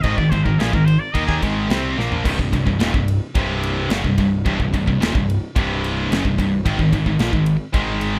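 A distant, nasal straight-muted trumpet with vibrato and digital delay opens this dark, relentless heavy metal excerpt, playing a brief solo line over a wall of guitar riffs until 1.4 seconds. Two bright, scooped high-gain guitars, one up front and one double-tracked behind, play alongside a tight distorted guitar in the background, while a punchy fuzz picked bass and a polished acoustic drum kit with a tight kick and airy small-room sound drive on, a drum fill arriving at 2.0 seconds. The harmony moves between Ab5 and Cm, and the rough home-demo mix carries light reverb.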